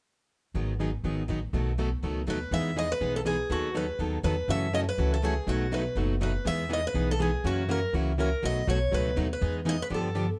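Playful and charming, this excerpt from a longer piece is acoustic string swing in the jazz manouche style, carried on a lilting swung feel. Two guitars handle the accompaniment: a plugged-in steel-string dreadnought with a warm, full-bodied tone, and a jumbo steel-string guitar sitting in the background with a bright, full-bodied, fresh-stringed ring. Underneath, an upright bass played pizzicato on gut strings sounds woody, dark and thumpy, placed up front in the mix. At 2.3 seconds a picked concert steel-string guitar enters with the melody, bright and up front, with audible finger squeak on its fresh strings. The harmony moves through jazzy seventh and ninth chords, settling on Emaj7 before a closing G9. A light reverb gives the ensemble a gentle sense of space.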